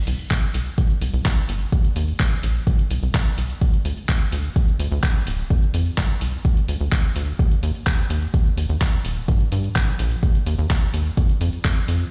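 Driving and bittersweet, this progressive house passage is cut from a longer piece and rides a straight 4/4 pulse. A tight, punchy sequencer bass with a sawtooth and square-wave filter pluck sits up front, its fast attack and decaying notes saturated yet mellow, pumping against the sidechain from 0.1 to 12.1 seconds. A deep, overdriven electronic kick anchors the groove from 0.3 seconds, while a layered deep house kit of handclaps and hi-hat adds grit, the whole played back through a big system in a bare, stone-walled room.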